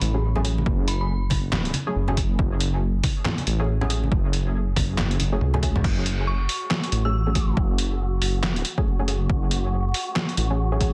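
A deep, rumbling detuned saw bass sits up front from the very start, its saturated unison tone beating darkly beneath this dark, meditative deep dubstep excerpt in a half-time 4/4 with a swung feel. A muffled, pitched-down trip hop sampler-style kit with overdrive brings handclaps, hi-hat, a medium-tuned snare, toms and crash, joined at 0.7 seconds by a punchy, layered electronic kick, while ringing hand-played congas sit in the background until 5.8 seconds. Muted, filtered dub chord stabs on a minor add-nine chord pluck with chorus and dub echo, and an eerie, inharmonic FM synth bell with a warbling vintage character appears briefly near the start and again around 6.3 seconds. A drum fill leads into the second pass of the section, where an airy, breathy wind-like noise texture drifts in at 6.4 seconds on a held note with its own reverb. The mix is dense and heavily limited, with a layer of vinyl crackle running through it.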